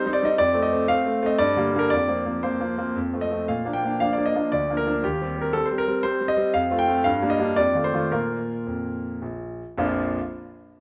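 In a three-beat metre with free, rubato timing, this cheerful, playful classical-period sonatina is carried by a solo concert grand piano, brilliant and up front, reaching from a deep bass to the upper register. The music slows between 5.8 and 9.8 seconds before settling on the home chord, and a new passage begins at 9.8 seconds, shortly before the piano stops at 10.2 seconds. The piano's smooth, vintage character sits within a wet recital-hall reverb in this short extract from a longer piece.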